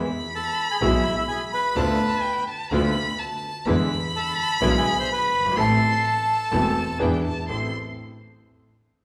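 A dark, expressive bowed violin with portamento opens this melancholic, dramatic tango excerpt in A minor at 126 BPM with a rubato feel, alongside a brilliant, vintage-toned grand piano, an earthy bowed double bass, and very quiet, veiled con sordino string stabs. At 0.4 seconds a reedy, close-miked bandoneon takes the melody up front, dry and full against the piano's long sustain, while the vibrato-laden violin carries a second line from a distance. The recording sits in a wet recital hall, its chords moving from E through Bm7b5/D and E7 to Am.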